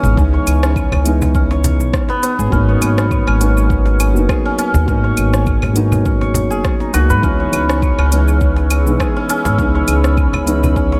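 A woody, pizzicato upright bass sits up front in this earthy, hypnotic piece of organic downtempo, anchoring a short passage cut from a longer work with a gentle swing. Around it, a hammered santur spins shimmering, ringing arpeggios through a dub echo, while a dark felt-muted upright piano supplies soft, intimate accompaniment with tape echo and the same sidechain pumping heard on the bass. The drums blend a deep electronic kick, entering at 0.2 s, with a deep house kit of claves, smooth hi-hats, rim click and shaker, while a snappy cajon struck with hard hands sits further back. At 8.3 s a nostalgic, lo-fi pad with a slow attack drifts in, its detuned, warbling chords coloured by chorus and phaser. The harmony moves between C#m7 and G#m7, and the whole mix carries light reverb with plenty of echo.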